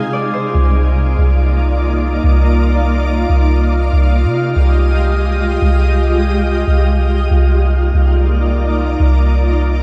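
Hip hop at 142 BPM in a half-time feel, this spacious, melancholic excerpt cut from a longer piece sits in C minor and drifts through Fm7/C, Cm11 and Fm9/C chords. A shimmering, ethereal ambient pad carries sustained chords up front, its detuned, granular tone softened by chorus and built-in reverb. A bright, ringing concert harp melody with delay sits in the background and plays only until 2.3 seconds, while a deep, round 808-style bass enters at 0.5 seconds, all under a light studio reverb.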